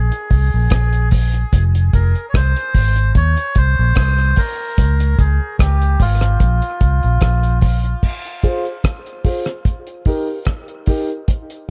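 A reedy, breathy melodica soaked in dub echo opens this spacious, deep dub reggae excerpt in F minor at 74 BPM over a round, foam-muted fingered electric bass and a cloth-damped, thuddy drum kit with a tight kick, rim clicks, hi-hat and dark crash cymbals, before the melodica drops out around 7.6 seconds and the bass around 7.9 seconds, and a mellow, woody upright piano enters at 8.4 seconds with echoing stabs, all set in a small room with a dark production.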